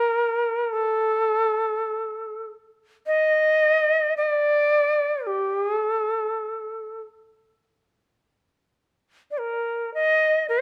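Calm and austere, this brief passage of Japanese traditional music, cut from a longer piece, features a solo bamboo shakuhachi, up front with a reedy, airy tone, chiff and tongued notes touched with vibrato, heard in a moderate recital hall reverb.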